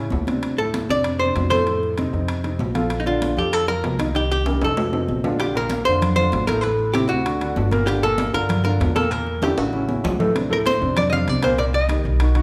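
A dark, clean hollow-body archtop guitar carries the melody up front from 0.6 seconds in this lively, danceable Afro-Cuban jazz excerpt in Bb major at 194 BPM. Beneath it sit an intimate concert grand piano with audible action noise, a woody, growly pizzicato upright bass, bright high-tuned congas struck with hard hands and ringing metal-shell timbales. Drum fills arrive at 4.5 and 9.4 seconds, and everything is set in a moderate recital hall reverb.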